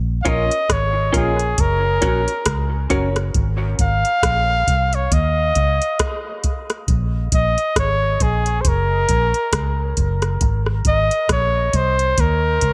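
Deep and hypnotic, this dub reggae excerpt sets a close-miked, vibrato-laden flugelhorn up front over a round, punchy, foam-muted electric bass and a soft analog rhythm box of deep kick, metallic hats and rim clicks, while a woody upright piano in the background and a dark, compressed semi-hollow guitar add echoing touches that drop out by 3.1 seconds amid light digital ambience.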